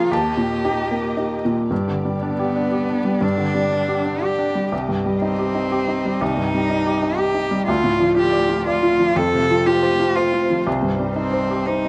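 A dry, close recording in the manner of a 1970s studio, with a small room's ambience, carries this neoclassical piece for piano and strings, cut from a longer work. The mood is longing and reflective, moving with a rubato feel in three-time. A felt-muted upright piano sits up front throughout, soft and mellow, its thin felt and audible action noise giving the accompaniment an intimate quality. Beside it, a single bowed cello plays a rich, expressive second line with vibrato and portamento, also close and up front. Further back, a lush symphonic string section holds sustained chords with a smooth top, its ensemble vibrato and portamento adding a warm cushion. After an opening on Eb, a new section begins at 1.7 seconds and moves through G, C minor, D minor and F before settling back on C minor.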